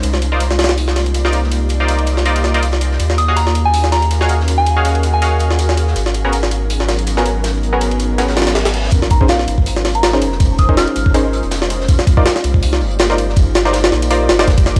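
The recording sounds dry and gritty, like hardware captured in a digital ambience with a layer of vinyl crackle over it. This dark, frenetic drum and bass cut moves at 162 BPM with a light swing on the sixteenths. A compressed, pitched-up jungle sampler kit sits up front with a thumpy kick, a high-tuned snare, hi-hats and ride, all filtered and set in a small room. Beneath it a very quiet, saturated acoustic breakbeat with a rolled-off top adds crunch. A deep, round sub bass holds the low end. An ethereal, airy pad sustains minor eleventh chords over it, moving from Cm11 through Ebm11, Abm11 and Bbm11. A nasal, band-passed sawtooth stab with sampler grit and dub echo punctuates the chords. A soft, warbling FM bell carries the melody from 3.2 to 5.7 seconds and again from 9.1 to 11.1 seconds. A faint reverse cymbal from 8.3 seconds leads into a build-up at 8.9 seconds, where a filter sweep runs on the stab.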